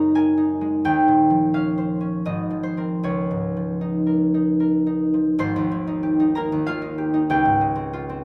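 A concert harp, fingerpicked and ringing, sits up front in this serene, dreamy solo classical fragment in Db major, moving in a rubato 3/4 that drifts between 69 and 96 BPM. Its warm, acoustic tone spans from Ab1 up to Db6, floating on lush added-sixth and extended chords such as Gb69 and Eb13 before a new passage opens on Abmaj9 at 5.4 seconds. A wet recital hall reverb surrounds the harp, and the piece settles on Dbmaj7#11 as the fragment closes at 8.2 seconds.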